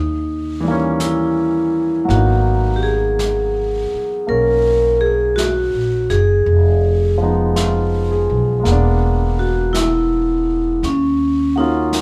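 A ringing, metallic vibraphone carries the melody up front in this melancholic, smoky jazz ballad, struck with medium hard mallets and its motor off so each note sounds plain and unwavering. Beside it, the upright bass sits just as close, played pizzicato with a woody, growly tone on steel strings. The baby grand piano comes in at 0.6 seconds with a natural, long-sustaining accompaniment, and a softly mixed brush kit follows at 1.0 seconds, its airy, polished snare and hi-hat giving a gentle pulse. At a slow 55 BPM in 4/4 with a swung eighth-note feel, the harmony drifts from Eb7b9 through Abm9, Fm7b5 and E7#11 before settling on Ebm9. Light reverb frames the band as if playing live together in one room, and this brief piece is cut from a longer performance.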